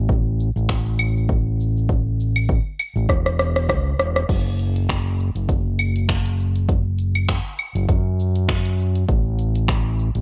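Sunset chillout in A major at 100 BPM with a swung sixteenth feel, this blissful, warm excerpt rides on a dark, round, overdriven fingered electric bass up front from the start, joined at 0.1 seconds by a punchy electronic kick and a layered deep house kit of claves, crash, finger snaps, dark hi-hats, rim clicks and shaker, all dry, with a drum fill from 3.1 to 4.3 seconds leading into a new section.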